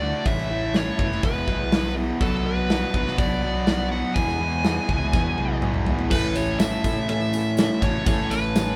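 Classic rock with a confident, swaggering strut, this short cut from a longer piece opens with a dark, smooth lead guitar carrying the melody over a bright, distorted rhythm riff, a second overdriven guitar with spring reverb sitting in the background, and a round, amped fingered bass. A big-room drum kit with a punchy kick and medium-tuned snare joins at 0.3 seconds and rolls through a fill from 5.1 seconds. At 6.1 seconds a woody, short-sustain upright piano and a jingly tambourine slip in behind the band, which sounds as if it is playing live together in one room.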